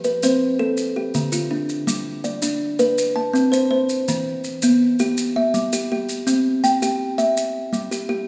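A hypnotic, rippling 12/8 cycle at 110 BPM in dotted quarters opens this excerpt of southern African traditional music, set in G mixolydian in the manner of an interlocking mbira pattern. An up-front kalimba with a woody, ringing thumb-plucked tone spins arpeggios from D3 to A5 through chords moving from F and Dm to G, Am, Em and C, while quieter maracas add a grainy, mellow shimmer. Both play from the start, the maracas stopping at 8.1 seconds just before the kalimba at 8.3, all within the moderate reverb of a recital hall.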